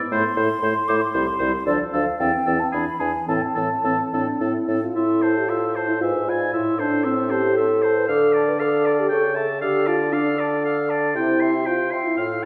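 A hollow, pure concert flute carries the melody over a clear oboe second line, a mellow French horn, a distant clarinet in the background and an up-front bassoon bass in this spirited, graceful classical-period wind quintet movement in A minor, taken quickly at 116 BPM in 3/4 with a rubato feel, heard from further back in a recital hall with wet reverb.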